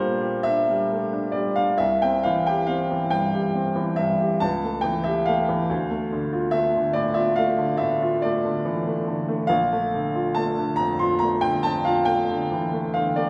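A tender, serene romantic nocturne for solo piano, unfolding in 9/8 with free rubato across its 13.3 seconds, cut from a longer piece. The upright piano sounds clear and woody with a long sustain, sitting up front while a wet recital-hall reverb opens the space around it. Its harmony drifts from Gm/Bb through C, A7/C# and Dm before settling on a Bbmaj7, with the instrument tuned slightly high at A4 = 445 Hz.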